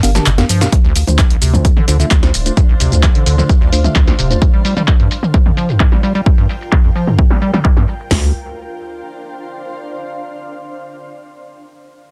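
A dense, heavily limited and dry-sounding cut from a longer acid house track at 130 BPM in D minor, driving and trippy, where two overdriven analog drum machines (one with congas, handclaps, shaker and filtered toms, the other with a punchy kick up front) run under a squelchy, resonant square-wave acid riff with cassette grit, a deep saturated sub bass pumping to the sidechain, mellow tine electric piano stabs through tape echo until 4.4 seconds, and a cloudy, detuned granular pad that drifts in at 2.3 seconds and fades over chords moving between Gm7 and Dm7.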